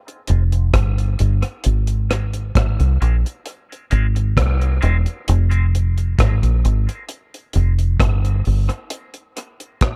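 Dub reggae in F minor at a meditative 66 BPM, where a dry, tight-kicked drum kit with hi-hat and rim click and a round, punchy, foam-muted fingered bass sit up front in an echo-heavy small room, while a dark, scooped clean electric guitar with dub echo and a filter sweep plays from 0.3 to 5.0 seconds over Fm and Ab before the bass drops out at 8.7 seconds and the drums carry the closing break alone.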